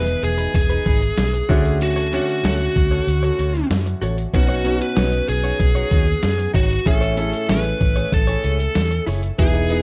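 1980s-style pop with a glossy, romantic mood, this excerpt is led by a bright, overdriven lead guitar carrying the melody up front over a clear concert grand piano with deep bass, while a compressed, direct-recorded clean electric guitar plays a riff with subtle chorus. A round, foam-muted fingered bass sits forward beneath a lo-fi sampler-style drum kit that is pitched down, muffled and overdriven, with a thumpy kick, medium-tuned snare and hi-hat entering at 0.1 seconds, and a very quiet, jingly tambourine sounds distant in a large room from 0.2 seconds. The chords move through lush major-seventh and added-ninth harmonies, Emaj7, Dmaj7, Badd9 and Amaj7, inside a dark production with moderate studio reverb.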